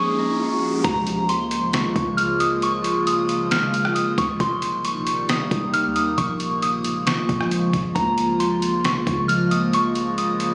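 A warbling, detuned tape-like pad sits up front, holding nostalgic lo-fi chords through chorus, phaser and sidechain pumping, while a soft, pure FM synth bell carries the high melody through delay and a low-pass filter in this dreamy, blissful atmospheric cloud-rap excerpt at 135 BPM in a half-time feel. A background concert harp rings out arpeggios and an electronic riser leads into an impact before gritty, pitched-down sampler-style drums with a thumpy kick and a deep, boomy 808-style bass enter at 0.8 seconds; the harp stops at 2.2 seconds. The chords drift between Bbm7, Db6 and Cm7 in Db lydian, and the mix has the roomy sound of a phone recording with studio reverb and compression.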